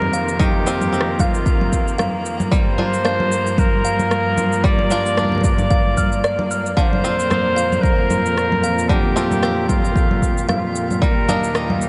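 Soaked in a huge, dreamy reverb with its top end rolled off, this hopeful folktronica excerpt sets a clear, up-front flugelhorn melody trailed by diffuse ambient delay over veiled, con sordino string quartet chords, with a twangy, gritty fingerpicked banjo arpeggiating in the background, a tinkling music box second line, overdriven electronic congas, cabasa and rim click, and a deep, distorted electronic kick that enters at 0.4 s.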